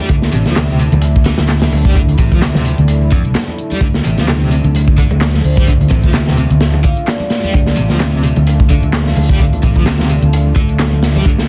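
A gritty, saturated breakbeat drum kit with a tight kick and a dark, rolled-off top sits up front alongside a punchy, amped fingered electric bass, driving this funky, energetic breakbeat excerpt in D minor at 129 BPM with a light 16th-note swing. A bright, double-tracked overdriven guitar riff with tube saturation, tremolo and dub echo rides over a deep, moody sawtooth pad that pumps with sidechain, while a tape-warm analog drum machine adds handclaps and hi-hat and quiet, ringing congas fill the percussion. Between 5.4 and 7.7 seconds a mellow soft-mallet vibraphone appears in the background through a boxy small-speaker sound and dub echo, all within a dense, heavily limited master dusted with vinyl crackle.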